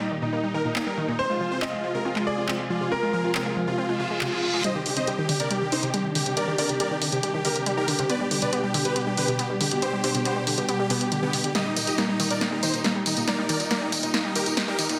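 Emotional and driving, this uplifting trance passage, cut from a longer piece, moves in a straight 4/4 pulse. A huge, detuned supersaw carries the melody up front from the start, with delay trailing its sustained notes, while a bright, brilliant grand piano adds a short second line with dub echo that stops at 3.7 seconds. Beneath them, a dark, woody string section holds bowed chords with vibrato, and a punchy, wave-folded unison pluck runs arpeggios through dub echo, a filter sweep shaping its sound across the passage. The analog drum machine enters at 0.8 seconds with a punchy snare, handclaps, hi-hat and tambourine, and a reverse cymbal leads into a new section at 4.6 seconds, where the harmony turns to Cmadd9 and the music begins a build-up. From 11.5 seconds a drum fill and a riser push toward the close, all set in a wet digital room and a dense, heavily limited modern master.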